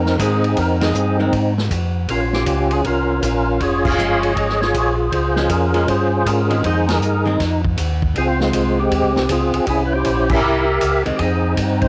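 Bluesy and soulful, this short cut from a longer soul jazz organ trio piece swings at 158 BPM in F minor, moving through Fm7, Bbm7, Dbmaj7 and a tense C7b9 before settling back on Fm7. A percussive tonewheel organ carries the melody up front, its fat, lightly overdriven tone marked by key click, third harmonic percussion, chorus vibrato and a slow rotary speaker, with a faint cassette tape grain. Beneath it, a second tonewheel organ holds the bass line with a mellow, round, clean sound, also turning through a slow rotary speaker and a touch of transformer saturation. A vintage drum kit of kick, snare, hi-hat, ride and crash sits in a studio room with dark cymbals, a punchy kick and a rolled-off top, hitting band accents with the group at 0.8, 3.8, 6.8 and 10.2 seconds. A hollow-body archtop guitar adds dark, picked, compressed comping in brief spots, most notably from 4.0 to 7.4 seconds, bathed in plate reverb, and the whole performance carries the light reverb and intimate character of a home cassette recording.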